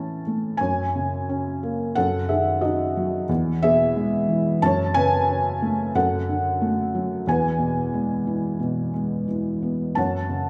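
A felt-muted upright piano plays alone from the start, its dark, intimate tone sitting up front across a range from E2 to A5 in this lyrical classical solo piece, taken from a longer work. At 90 BPM in 4/4 with a rubato feel, the bittersweet, cool harmony moves from A through F#m13, E and D/F# before settling on F#m at 10.0 seconds. A wet scoring-stage reverb with a 1.6-second decay gives the piano the spacious ring of a church or concert hall.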